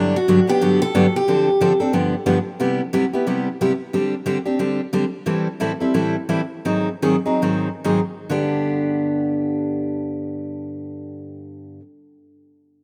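A rough home-demo sound with a moderate plate reverb frames this lively, charming swung jazz cut in G major, where a boxy parlour-toned steel-string acoustic guitar picks a brief melody with tape echo and audible finger squeak until 1.8 seconds, while a full-bodied, up-front dreadnought steel-string guitar carries the accompaniment through changes like Gmaj7, Cmaj7 and Ab7 at 127-181 BPM, slowing down from 5.3 to 8.3 seconds before settling on G.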